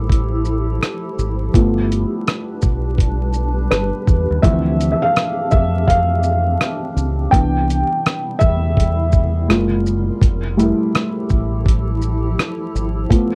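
Through vinyl crackle and light reverb, this hazy, nostalgic lo-fi hip hop fragment sets a felt-muted upright piano in front, boxy and intimate with audible action noise and cassette-tape softening, taking a solo over Fmaj9, G7, Dm9 and Cmaj7 chords, while a blurred granular cloud pad drifts beneath, a deep dub fingered electric bass stays round and punchy until 13.0 seconds, and a gritty, compressed sampler-style kit of thumpy kick, hi-hat, rim click and shaker swings its 16ths from 0.1 seconds.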